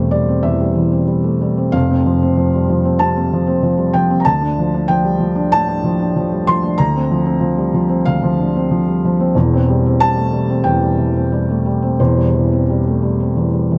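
Neoclassical minimalist piano in a reflective, intimate mood, this short excerpt from a longer piece features a solo felt-muted upright piano, soft, mellow and up front, moving with rubato around 94 BPM in 4/4 through chords from C/E to F, Dm and Bbadd9/D before returning to C/E at 9.3 seconds, spanning E1 to C6 with light reverb in a dark production, tuned to A4 = 439 Hz.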